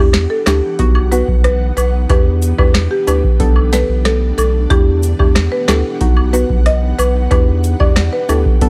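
A buzzing, woody marimba carries the melody from the first beat over a soft, chorused pluck and a round, dark analog bass in this hypnotic, bouncy dancehall excerpt in E minor at 92 BPM, moving between Em7, B and Bm7 chords. A booming drum machine sits up front with a deep kick, crisp snare, metallic hats, rim clicks and vintage 12-bit grit, while an ethereal pad with ensemble chorus, tremolo and sidechain pumping enters at 0.2 s, and cabasa and woodblock join quietly at 0.5 s. The mix carries little reverb.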